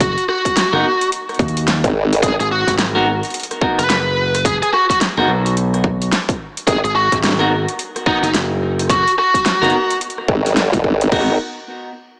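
Glitch hop at 108 BPM in G# minor, this swaggering, gritty passage is cut from a longer piece and sits in a drop built on a single G#m7 chord, with a swung sixteenth-note feel. A bluesy overdriven lead guitar carries the melody between D#4 and B4, its distorted, picked tone treated with analog delay, while a clean, twangy electric guitar adds picked stabs from 0.7 seconds, pumping under sidechain compression and also echoing through analog delay. Underneath, a modern bright fingered electric bass plays punchy, direct lines low in the register, and a formant-sweep wobble bass, saturated and thickened with chorus and overdrive, bursts in on a low G#1 in short stretches, first at 1.8 seconds. Two layered dubstep drum kits, tape-warm and set in a small room, supply a punchy kick, crash and toms alongside a huge snare, rim clicks and metallic hats. The whole mix feels dreamy and soaked in a lush hall reverb, yet carries a small-speaker character.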